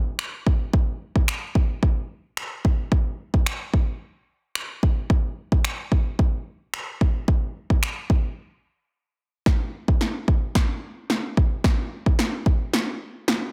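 Driving and energetic, this pop cut from a longer piece runs at 110 BPM in a straight 4/4 and rests entirely on a layered electronic deep house drum kit of finger snaps, a deep kick and a punchy snare, with overdrive and soft clipping on the snare, and the kit sits up front. After a break at 8.4 seconds, the kit launches into a drum fill that drives a build-up from 9.5 seconds to the end. The sound is dense and heavily limited, with little reverb overall, though the kit carries the air of having been re-recorded in a large room.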